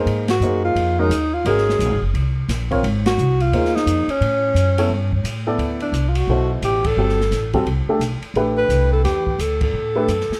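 Hypnotic and searching, this short modal jazz excerpt swings at 174 BPM in 4/4, moving from Ab mixolydian to D mixolydian at 5.6 s as the harmony travels from Ab13 through A7 to D7sus4. A breathy alto saxophone sings the melody up front with subtone and vibrato, over a woody upright piano, a pizzicato upright bass with steel strings, and an airy, polished drum kit with dark cymbals, a medium-tuned snare and a boomy kick. The band lands a handful of shared accents, and a moderate spring reverb wraps the dark, warm production.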